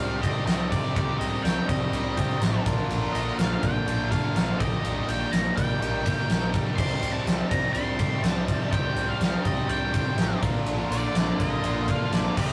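This swaggering, brooding classic rock excerpt in C minor opens with its guitars, bass and electric piano sounding together, and a huge arena drum kit joins at 0.2 s with a punchy kick, fat snare and bright crash and ride cymbals ringing in a big, natural room. At a straight 123 BPM in 4/4, a biting, double-tracked overdriven guitar drives the riff, shadowed by a very quiet, raw garage guitar that is also double-tracked and overdriven but warmer in tone. A picked electric bass sits low with a round, amped sound, while an octave-fuzz lead guitar with a dark, distorted edge carries the melody high above. Deep in the mix, a reedy, clean electric piano with fast tremolo and a picked dreadnought steel-string acoustic guitar, complete with finger squeak, fill out the accompaniment. The chords move from Cmadd9 to Bb and Eb/Bb before circling back, and the recording has the rough feel of a rehearsal room, with light reverb and saturation.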